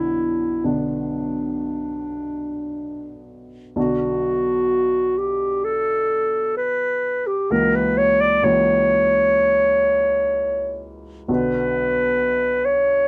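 Solemn and elegiac, this short romantic classical duo in B minor moves with a rubato feel at 55-67 BPM in 4/4, as a soft-attacked, up-front solo clarinet sings the melody over an open baby grand piano accompaniment in a dark, lightly reverberant production, the harmony passing from Bm to F#7/C# at 7.5 seconds before returning home at 11.3 seconds.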